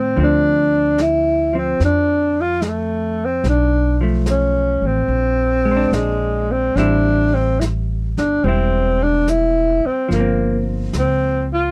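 Late-night and intimate, this jazz ballad moves at an unhurried swing in four, heard here as a short cut from a longer piece. A breathy tenor saxophone carries the melody up front, its mellow subtone, soft attack, vibrato and scooped notes giving it a whispered, roomy quality. Beneath it, a dark, clean hollow-body electric guitar plays fingered accompaniment, while a pizzicato upright bass with a woody, growly tone sits prominently in the mix. A vintage brush drum kit enters at 0.2 seconds with brushed snare and hi-hat, its small-room sound soft and rolled off at the top. The harmony drifts from Dm7 through Bm9b5 and Bb9 to Am7, settling on Gm7 at 10.1 seconds, all captured in a dry, close 1970s-style studio sound with little reverb.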